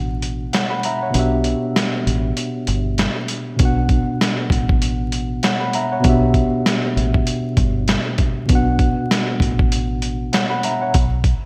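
Dark and tough, this boom-bap hip-hop excerpt in B minor moves at 98 BPM with a swung 16th-note feel, as a mellow tine electric piano with a cassette-tape character and a round, foam-muted fingered electric bass cycle between Bm and Em9. A muffled, pitched-down, sampler-style trip hop drum kit sits up front with a thumpy kick, a medium-tuned snare, hi-hat and gated reverb, though the kick drops out from 1.1 to 3.6 seconds. A lush hall reverb, bright 1980s-style digital sheen and vinyl crackle frame the whole, with the parts falling away around 11 seconds.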